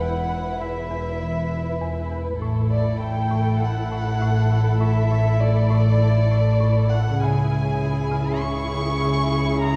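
A dry, woody marimba riff, struck with hard mallets, opens this tense, uneasy cinematic suspense cue at 100 BPM in 4/4, with bowed string sections sounding from the very first moment. A chamber violin section carries the melody with light vibrato and a soft, intimate sul tasto tone, while symphonic violins add a pure, floating second line. Cellos and a rich double bass section in the background hold the bass beneath chords moving from E5 to Asus4 to C#m, and a scoring-stage reverb gives this short excerpt a haunted depth against the bright, close marimba.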